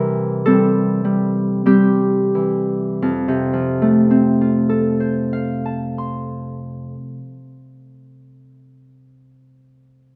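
A Celtic harp plays alone in this brief, peaceful excerpt cut from a longer classical piece, its thumb-plucked strings warm and ringing as they sit up front in the sound. The music moves in a slow, rubato 3/4 at roughly 43-54 BPM, in F major, and the harp spans a range from F2 up to C6. A wet recital hall reverb surrounds the instrument, lending the whole passage a dreamy, spacious glow. The opening phrase rests on a C7 chord and slows down over its first 3.0 seconds. At 3.0 seconds a new section begins, settling onto F, before the harp's sound ends at 8.4 seconds.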